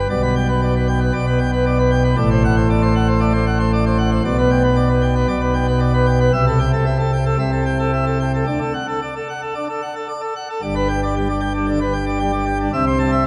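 A solo pipe organ on a full plenum, its mixtures giving a brilliant, baroque-voiced sound placed up front, carries this majestic classical toccata in G major at 115 BPM in a straight 4/4, tuned to A4 = 445 Hz and spanning G1 to A5. A long, wet church reverb of 2.8 seconds surrounds it as the harmony moves through G/B, D7/A and Am7/C to D, before a new passage opens on G at 10.6 seconds and turns toward Am/C. The 13.3-second clip is cut from a longer piece.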